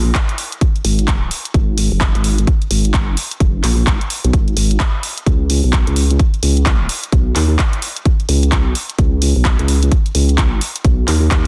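Dry, dense and heavily limited, this gritty, aggressive bass house cut swings its sixteenths as a dark, nasal vowel-sweep wobble bass with chorus and sidechain pumping sits up front beside a punchy, layered electronic kick drum, while an overdriven house drum kit of handclaps and hi-hat plays lower in the mix with a large-room sound.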